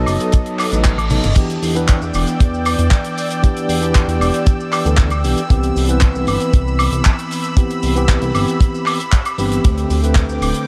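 A straight 4/4 nu-disco groove at 116 BPM in E minor, driven by a dry, tight kick up front and a damped 70s acoustic kit of hi-hat, handclaps, cabasa, woodblock, toms, ride and crash, with a drum fill and a faint electronic reverse cymbal leading into the drop at 1.4 seconds. Over chords moving from B7 to Em7, Cmaj7 and D7sus4, a glossy, mellow chorused synth bass holds the low end while a clean tine electric piano, pushed through a combo amp with medium tremolo, tape echo and sidechain pumping, carries the accompaniment up front. A lush, thick detuned unison pad sustains chords above with slow attack and chorus, pumping along with the kick, giving this cut from a longer piece a cosmic, groovy feel in light small-room reverb.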